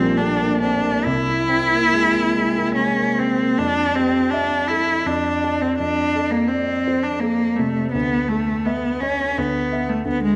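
Classical impressionist duo in a dreamy, pastoral mood, a rubato 3/4 in F major drifting between 66 and 89 BPM, where a rich, focused bowed cello with vibrato sings the melody up front over a warm grand piano accompaniment of long sustain, both playing throughout this brief 10.4-second fragment of a longer piece, with harmonies such as Bbadd9, Caug7 and Fmaj9 shifting to a second section at 3.6 seconds, all set in a moderate recital hall reverb.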